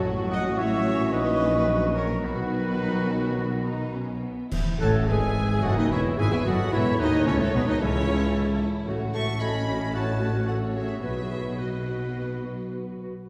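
Lush, vibrato-rich violins carry the melody of this dramatic yet cheerful and graceful romantic orchestral passage in E major, moving at 103-114 BPM in 4/4 with a rubato feel, while a softer second violin section, a clear clarinet, a roomy oboe and an airy, hollow flute add supporting lines. Violas, a dark bassoon, mellow French horn chords, soft-edged trumpet stabs and ringing harp arpeggios fill the middle, above a deep foundation of tuba, bowed double basses and smooth-topped cellos. At 4.5 s, clash cymbals and concert bass drum mark an accent as the harmony lands on E, and a wet scoring-stage reverb places the orchestra further back in the room.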